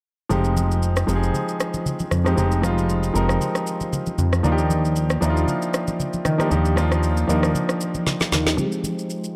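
A dark, warm mix with light reverb and a small-room ambience frames this soulful, hypnotic amapiano excerpt in swung 4/4, moving from Fm7 to Ebmaj7 and back. Up front, a clear, polished baby grand piano, softened by a low-pass filter, plays accompaniment beside a fat, detuned sawtooth analog bass whose fast-attack filter pluck decays. Layered electronic shaker, rim click and a woody snare carry the groove and land a drum fill from 8.1 to 8.6 seconds, while damped, thick-skinned congas played with soft hands sit in the background.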